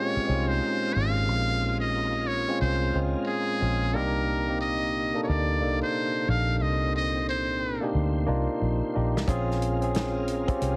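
A heavily compressed, radio-like sound with light reverb and studio ambience frames this smooth, late-night neo-soul R&B fragment in Bb dorian, moving at 90 BPM with a swung 16th feel over Bbm9 and Cm9 chords. A buzzy, breathy metal-muted trumpet carries a jazz-style solo melody with light vibrato and scooped notes until 7.9 seconds, over a barky tine electric piano through a combo amp, a round, punchy foam-muted fingered bass, and a lightly overdriven tonewheel organ with key click, chorus vibrato and slow rotary speaker set in the background. A soft-topped soul drum kit with a tight kick and medium-tuned snare joins at 9.2 seconds.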